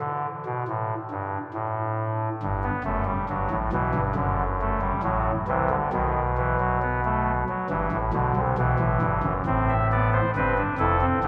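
A classical, baroque-style four-part fugue for pipe organ in A minor, this brief excerpt moves at a measured 68 BPM in straight 4/4 with a serious, contemplative mood. A single chamber organ plays alone throughout its 11.3 seconds, voiced with a soft reed oboe stop that sits up front and speaks with a touch of chiff. Its range stretches from a deep F1 up to E5. The harmony opens before any chord is established, settling on E minor at 2.4 seconds, then passes through D/F#, B7 and Em/G before arriving on A minor at 9.4 seconds. A wet cathedral reverb with a long 4.7-second decay surrounds the organ, giving the intimate reed tone a vast, lingering halo. The passage is cut from a longer piece.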